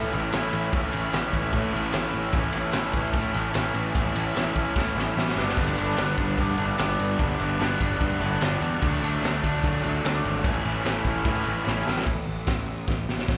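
Raw, rowdy garage rock at 148 BPM in A mixolydian, heard live through a club PA. A bright, double-tracked overdriven guitar riff with slapback echo rides A, G and D over a round, punchy fuzz bass and a gritty, boomy drum kit with a high-tuned snare and rolled-off top. The guitar drops out at 12.1 seconds, leaving bass and drums to close on one last fill.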